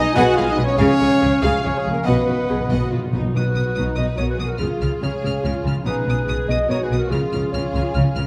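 Cinematic, soaring and adventurous orchestral cue at 143 BPM in 3/4 and B lydian, cut from a longer piece, where a lush, expressive violin section with vibrato carries the melody over a softer background violin line, a dark, distant clarinet, a rich, close viola section, mellow ringing harp arpeggios and bowed cello and double bass sections holding the bass, while airy flutes, a clear oboe, soft-attack French horn chords and classical trumpet stabs drop out by 3.1 s and round soft-mallet timpani fill in from 2.1 s, set in a moderate scoring-stage reverb.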